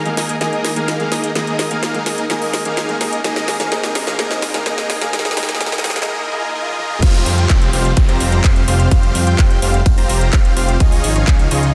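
A dense, heavily limited modern mix with light reverb carries this powerful, euphoric festival progressive house cut, taken from a longer piece and moving at 127 BPM in F minor. A huge, airy supersaw lead with a detuned, bright edge and a cassette-tape tint sits up front playing the riff throughout, pumping against the sidechain, shaped by a low-pass filter and trailed by delay. Beneath it, a lush, warbling vintage pad holds sustained chords very quietly, while a clear but boxy baby grand piano adds pumping, delayed accompaniment until 6.1 seconds. A house drum kit with a cracking snare, metallic hats, claps, toms, ride and crash drives the build-up with fills, joined by very quiet risers, swells and downlifters. At 7.0 seconds the drop lands, bringing in a punchy, layered electronic kick and a fat, nasal, saturated analog bass that pumps beneath the chords moving from Fsus2 to Dbadd9.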